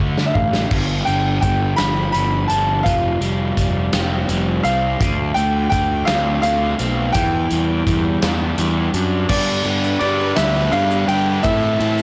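A fuzzed, overdriven electric bass sits up front in this cool, bittersweet indie rock excerpt, cut from a longer piece in a slow 6/8. A big rock drum kit, acoustic and mid-forward with a tight kick, a rolled-off top and soft clipping on the snare, opens with a short fill. A crunchy, double-tracked electric guitar plays a picked riff alongside it. From 0.3 seconds a clear, woody upright piano carries the melody high above, with long sustain, over chords moving from Fsus2 through Dm7 and Em7 to G and Am. At 9.3 seconds a new section brings in a bright trumpet with vibrato as a second line in the background, joined by a grainy egg shaker, close and dry. The whole recording is blown-out and overdriven, set in light studio reverb.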